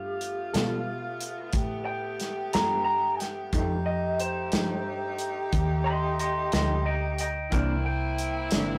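Slow blues in 12/8 at 60 BPM, swaggering and gritty, with a slightly broken-up electric guitar through a small old amp playing a second line over bright, vibrato-rich saxophone section chords, a dark, foam-muted fingered bass, an up-front soul drum kit with a tight kick and rolled-off top, and a mellow, clean guitar accompaniment with tremolo entering at 0.5 s, all moving through G9, F9 and C9 in a rough rehearsal-room recording with saturation and moderate reverb.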